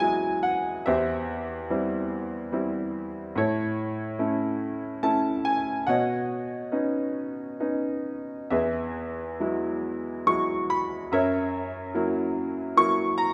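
Calm and tender, this short excerpt of lyrical classical solo piano moves at 71 BPM in a flexible, rubato 3/4, cut from a longer piece in E major. A bright grand piano, brilliant, open and worn in tone, sits up front and spans E2 to C#6, drifting through an Eadd9, C/E, A and Badd9 colouring before resting on an F#7 at 11.1 seconds. Moderate concert hall reverb gives the instrument a spacious bloom.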